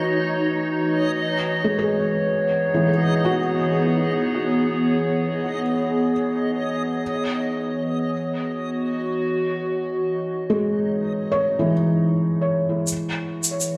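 A warbling, tape-like pad with a nostalgic, lo-fi haze holds sustained chords up front, moving from F#m7 to C#m7 in this deep, hazy stretch of ambient dub, cut from a longer piece and drifting in free time. A felt-muted upright piano enters at 1.6 seconds with soft, dark, intimate arpeggios trailed by analog delay, while a reversed, granular texture swells quietly and brightly beneath, dreamy and detuned. Near the close, at 12.9 seconds, a distant, roomy shaker appears as the chords fall away, all set in an echo-heavy mix with moderate chamber reverb.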